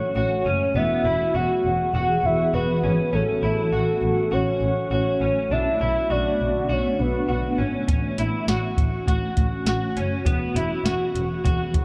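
Straight 4/4 dream pop, blissful and ethereal, in which a cloudy, evolving granular pad and slightly broken-up picked electric guitar arpeggios with chorus and delay float over an earthy bowed double bass, while a round, octave-layered synth lead with chorus, tremolo and delay carries the melody until 7.6 s, and a tape-warm vintage rhythm box with deep kick, crisp snare and metallic hats arrives up front at 7.9 s, set in a dark production with light reverb and cut from a longer piece.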